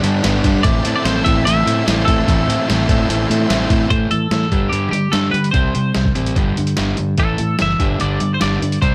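A twangy twelve-string electric guitar with analog delay carries the melody from 0.6 seconds over a warm overdriven electric guitar riff, a growling overdriven fingered bass and a muffled, pitched-down trip hop sampler-style drum kit with a thumpy kick, while a crunchy guitar with subtle chorus sits in the background and a very quiet, buzzy, heavily vibratoed combo organ holds sustained chords, both until 3.9 seconds, in this bittersweet, cool indie rock excerpt with light reverb.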